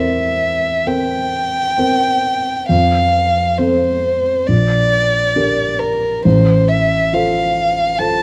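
Close, detailed microphones and vinyl crackle sit within a moderate concert-hall reverb on this serene, warm fragment of a romantic classical duo, where a single up-front violin sings a dark, woody melody with vibrato over the mellow, intimate accompaniment of a baby grand piano, heard with short sustain and audible action noise, both moving in rubato across 8.2 seconds.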